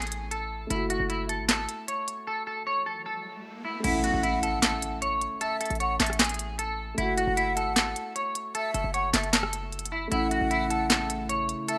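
A clean, picked electric guitar carries the melody up front from the start, its tone thickened by analog chorus. Beneath it sit a dark, mellow grand piano with long sustain, a punchy, heavy 808-style bass and a crisp electronic trap kit of sharp snare, hi-hats, handclaps, rim clicks and crash. This short cut from a longer hip hop and trap track runs at 153 BPM in a half-time 4/4 feel in A major, moving between A and F#m7 chords with a mood that is triumphant yet wistful. After a brief break, a background riser leads to an impact at 3.8 seconds, where a breathy, hollow concert flute enters as a close-miked second line trailed by tape echo. At 10.1 seconds a moody analog pad of detuned square and sawtooth tones with a sub octave arrives on a slow attack. The mix is dry and rough like a home demo, with the drums loudest and the guitar close behind.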